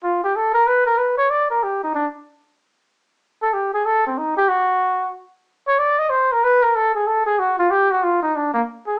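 Jazz at a brisk 187 BPM in 4/4, swinging its eighth notes with a playful mood in this short cut from a longer piece. A lone flugelhorn carries everything as the soloist, sitting up front with a warm tone, vibrato and a smooth top end, moving between Bb3 and Eb5. Its phrasing is firmly in the jazz idiom, opening one section and shifting into another at 2.6 seconds before the clip ends at 9.0 seconds. The horn sits in a moderate studio reverb that suggests a band captured live in one room, heard through a small-speaker sound.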